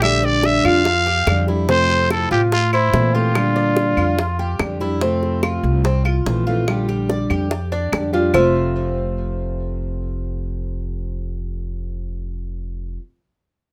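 A nasal, raspy straight-muted trumpet leads this sunny Cuban son and guajira piece at 144 BPM in F major, playing a jazz-style solo with light vibrato until 4.6 s over a boxy, fingerpicked plugged-in parlour steel-string guitar, a mellow, metallic Cuban tres playing tape-echoed arpeggios, and a dark, thumpy gut-string upright bass plucked up front, while round, low-tuned bongos and woody claves in the background stop at 8.4 s, leaving the strings to carry the closing Fmaj7 chord through to 13.0 s under light reverb.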